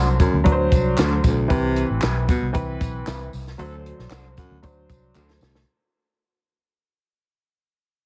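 Uptempo 1960s-style soul at 115 BPM in a straight 4/4, this short cut from a longer piece feels danceable and joyful, moving from D7 to Cmaj7 and back, and it fades out across its whole length. A worn, woody, slightly detuned upright piano sits up front beside a dark, round, foam-muted fingered bass, while a compact cocktail kit with a high-tuned snare and punchy kick drives the groove. From 0.2 seconds a baritone saxophone carries the riff with a warm subtone, light vibrato and a smooth top, joined by tambourine, maracas and group handclaps in a live room. A slightly broken-up electric guitar adds picked stabs in the background through a phaser and analog delay. A tight pop-style horn section slips in briefly at 3.6 seconds as the band hits an accent, and a drum fill closes things out at 5.2 seconds. The whole mix carries light studio reverb, a heavily compressed radio sound and a layer of vinyl crackle.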